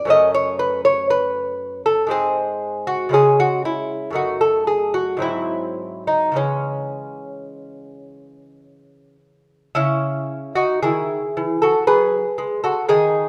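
A delicate solo lute, up front and warm, rings out in a moderate recital hall reverb, its fingerpicked gut double strings, some doubled at the octave, giving the tone a soft shimmer. This short excerpt from a longer baroque-style dance in C# minor moves in a flowing, dance-like 3/4 at around 52-61 BPM with a free, rubato feel, tuned slightly high to A4 = 441 Hz. The lute spans from low F#2 up to D#5, opening on F#m and passing through G#7 to settle on C#m, before a new section begins at 9.7 seconds and runs to the close at 13.3 seconds.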